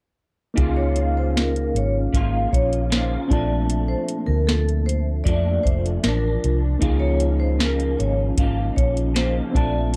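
A soft vintage rhythm box sets a straight, laid-back 77 BPM groove in 4/4 from 0.6 seconds, its deep kick, crisp snare and metallic hats sitting up front beside a round, foam-muted electric bass in this sunny indie and bedroom pop excerpt. Over chords moving from Db69 to Bbmaj7 and back, a reedy, clean electric piano and a slightly broken-up, picked guitar through a small old amp, dressed in ensemble chorus and vibrato, fill in the accompaniment. From 0.8 seconds a ringing vibraphone with medium mallets adds a second line, washed in lush chorus and analog delay, all set in light reverb within a dark production.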